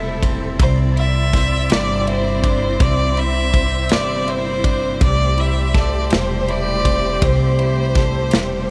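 A slow six-eight pulse at 54 BPM in dotted quarters, counted in 6/8 with a straight feel, carries this heartfelt, tender pop ballad in C major, heard as a short excerpt from a longer piece. A modern studio drum kit enters at 0.2 s with a punchy kick, a medium-tuned snare and ride cymbal, its sound mid-forward with a rolled-off top, while a woody, thumpy pizzicato upright bass on gut strings sits low beneath it. A clean, compressed twelve-string electric guitar picks the accompaniment, and a studio string section holds soft-attack sul tasto chords with vibrato and a smooth top, close and intimate. At 0.6 s a single bowed violin takes the melody, rich and even with vibrato, placed up front yet distant in character, carrying a diffuse ambient delay. The harmony moves from Am7 to Cadd9 at 0.6 s and back to Am7 at 5.0 s, all wrapped in light reverb and small room ambience.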